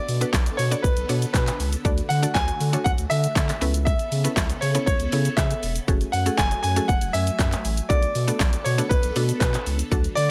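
Dance-pop at 119 BPM in 4/4 with a straight feel, this short cut from a longer piece feels energetic yet bittersweet as it moves through Bm7, D, Aadd9/C#, F#madd9 and back to Bm7. A bright concert grand piano carries the melody with a brilliant, polished, present tone and short sustain, touched by analog delay. Beneath it, a woody, round FM synth pluck with a noise layer supplies percussive accompaniment through chorus and sidechain pumping, while a swirling, vintage string machine holds sustained sawtooth chords in the background, warbling through ensemble chorus and phaser. A deep, thick sine sub bass, saturated and sustained, also pumps with the sidechain from 0.1 s. The electronic pop drum kit sits up front with a punchy kick, fat snare, handclaps, hi-hat and shaker, layered and re-recorded in a small room, and the whole mix has a dry, gritty hardware character within a digital ambience.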